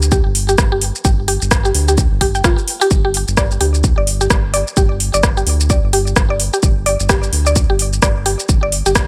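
A dry, close sound with little reverb frames this short cut from a longer minimal techno piece, with a hypnotic, sparse mood over a swung 4/4 groove. A punchy, tape-warm electronic kick drum enters just after the start, re-recorded in a small room, while an up-front house kit of metallic hi-hats, rim clicks and shaker carries the same small-room character. Underneath, a deep, dark analog bass blends sawtooth, sine and triangle tones into a detuned, sustained voice that pumps against the kick. A woody, bright synth pluck with a mallet-like, percussive FM edge and a noise layer plays the riff, thickened by chorus and delay and also pumping with the kick. Everything holds to a single G5 chord. The bass and house kit run for the full 9.1 seconds, while the kick and pluck come in a moment later and the pluck drops out just before the end.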